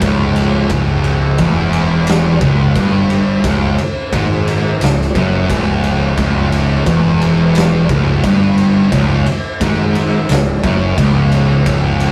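A straight 4/4 pulse at 88 BPM drives this heavy, ominous piece of stoner and doom metal in C# minor, cut from a longer piece and running about 12.1 seconds on a single C#m chord. An oversized, low-tuned acoustic drum kit plays throughout, with a boomy kick, a medium-tuned snare and dark ride cymbal, its sound saturated and gritty in a big, pumping room. Up front, a thick, double-tracked fuzz guitar holds a picked, distorted riff between C#2 and G#2. Beneath it, a fingered electric bass with overdrive sits between C#1 and G#1, direct and amped, its tone bright, growly and punchy. A moderate small-room reverb wraps the whole rough rehearsal-room recording.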